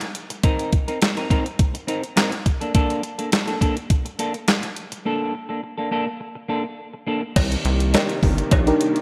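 A crisp 8-bit drum machine with a thumpy kick, handclaps and gated reverb drives this slick, danceable slice of early-eighties boogie funk at 104 BPM in C dorian, as a clean semi-hollow electric guitar riff with subtle chorus moves over Cm7 and Bbmaj7 and carries on through a break from 5.1 seconds. A rubbery square bass, a background cowbell and dark bowed strings then enter around 7.4 seconds, joined at 7.9 seconds by a dreamy FM electric piano with chorus and phaser, in a bright, hall-reverbed 1980s-style production.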